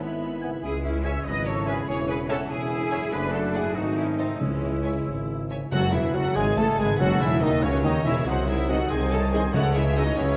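In a 6/8 metre, this stormy, restless passage from a fast romantic orchestral movement sets a lush violin melody over a hushed second violin line, very quiet bright flutes, a distant oboe, a mellow clarinet, intense violas, a bassoon, soft French horn chords, tight trumpet stabs, a ringing thumb-plucked harp and a deep bass of focused cellos, rich double basses and a roomy tuba, with round timpani entering at 4.4 seconds and trombone chords at 5.7 seconds, bathed in a dark concert-hall reverb.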